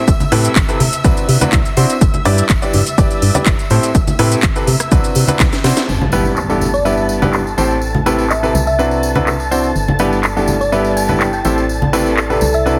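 A bright, up-front baby grand piano riff with dub echo and sidechain pumping drives this uplifting, joyful piano house excerpt at 124 BPM in G major, over a hollow organ-like FM bass, a punchy electronic kick that drops out at 5.5 seconds, a cracking house drum kit with metallic hats, ringing tambourine and congas, and muted, veiled violin chords, while at 5.9 seconds a background impact opens a new section where a tine-like synth pluck and a warbling, nostalgic tape-like pad join in a heavily compressed, radio-like sound.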